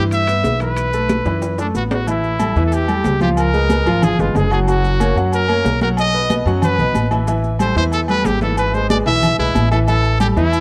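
Salsa at a driving, danceable 185 BPM, with a bright, up-front solo trumpet carrying the melody over a clear grand piano with audible action noise, a woody, thumpy pizzicato upright bass, and background congas, ringing timbales and agogo bells, and grainy maracas, all in light reverb and worn, warbling cassette tape, with a drum fill from 1.3 to 2.1 seconds leading into a new section.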